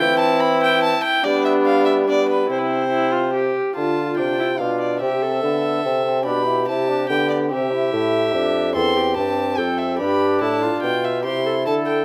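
A nasal, gut-strung violin sits close and up front with an airy bow, carrying the melody of this rustic, solemn renaissance-style consort dance in triple time, cut from a longer piece. A reedy viola with light vibrato traces a second line beneath it, while a brilliant but distant trombone supplies accompaniment and a dark, roomy bassoon anchors the bass. All four play throughout the 12 seconds in a moderate recital hall, with the opening phrase giving way to a second section at 3.8 seconds.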